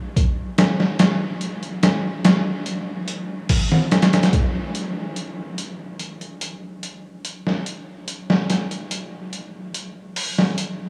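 Brooding and cinematic, this trip hop fragment in a straight 4/4 rests on a single sampler-style drum kit of hi-hat, kick and snare, entering at 0.2 seconds and running to 10.8 seconds, with the piece shifting into a new section at 4.7 seconds. The kit sits up front, compressed, pitched down and gritty, with a thumpy kick, a medium-tuned snare and a tape-warm character, re-recorded in a small room. The mix is dreamy and soaked in a huge, wet ambient reverb with a long tail.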